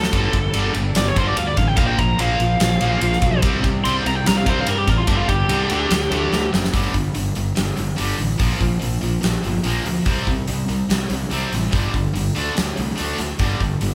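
Recorded as a band playing live in one room with light reverb, this heavy, aggressive hard rock piece is anchored by a huge arena drum kit, up front with a punchy kick and fat snare. Beneath it sit a growly, fuzzed fingered bass and two picked riff guitars: a tight distorted one, and a cranked overdriven stack set in the background with spring reverb. A biting lead guitar solos over the opening until 6.5 seconds, closed by a drum fill, while a very quiet, shimmering, retro pulse-width pad holds sustained chords that drop out at 6.7 seconds and return at 13.4 seconds.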